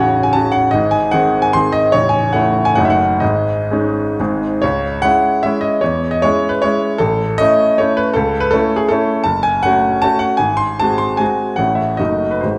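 Dotted rhythms drive this capricious, nostalgic romantic triple-time dance in 3/4 and C# minor, a classical excerpt for solo grand piano that moves with free rubato between 116 and 172 BPM, its intimate, up-front tone carrying audible action noise and long sustain from A0 to B#5 in a moderate recital hall, with a new section opening at 4.6 seconds on C#m.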